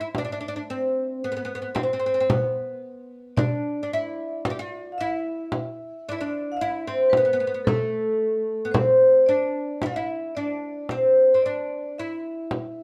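A dark, reverberant studio sound frames this longing, melancholic excerpt of an Arabic maqam ensemble in E maqam bayati, moving at 112 BPM in a straight 10/8, where a woody, fretless oud carries the deep, up-front melody with plate reverb, a small, bright frame drum sits close and dry under soft hands from the start, and at 3.4 seconds a metallic, ringing vibraphone struck with medium hard mallets enters lower in the mix with a boxy second line.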